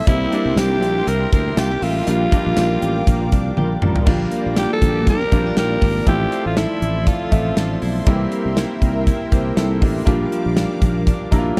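1980s-style pop at 120 BPM with a light sixteenth-note swing, glossy and nostalgic, led by a raspy, gritty alto saxophone melody with tape echo that sits up front until 7.8 seconds, over bright concert grand piano, a lush detuned unison pad and a clean, compressed electric guitar riff dressed in chorus and tape echo. A growly fretless bass and a punchy, gated drum kit with crash, hi-hat, tambourine and toms drive the groove from 0.1 seconds, with a band accent and a drum fill leading into the second section, while mellow synth brass stabs with chorus and phaser appear from 3.2 seconds. The sound is dry and polished, moving through chords such as C7, Gm7 and Fmaj7/A before a closing piano fill at 11.1 seconds in this cut from a longer piece.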